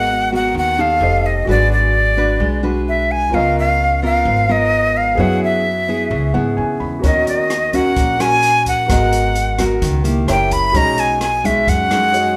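A straight 4/4 bossa nova groove at 129 BPM in G# minor carries this melancholic, smooth cut from a longer piece, with a breathy, reedy jazz flute up front singing the melody over rich extended chords, its vibrato and crisp chiff clear in a large studio reverb. A fingerpicked nylon-string guitar, full-bodied with the odd finger squeak, and a woody pizzicato upright bass lay down the accompaniment and the low end, while a warm, natural baby grand sits in the background and steps forward with a short fill at 6.1 s. An acoustic jazz kit joins at 7.0 s with hi-hat, rim click and a punchy kick, dark and smooth, as the band plays live together in one room.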